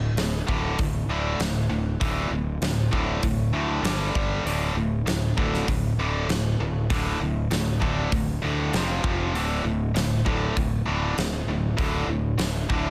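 Light reverb gives this short hard rock clip a sense of space, with the guitar and drums sitting up front in a powerful, energetic mix. A tight, double-tracked distorted electric guitar plays a bright, picked riff in a low register, built mostly on a D5 power chord with brief moves to G5 at 3.8 seconds and F5 at 8.7 seconds. Underneath, a fingered electric bass with fuzz and overdrive adds a growly, punchy low end, sounding both direct and amped. A huge arena drum kit enters at 0.2 seconds with a fat snare, punchy kick and hi-hat, its acoustic sound carrying a hall ambience. The band holds a straight 4/4 feel at 98 BPM across the whole passage, which is cut from a longer piece.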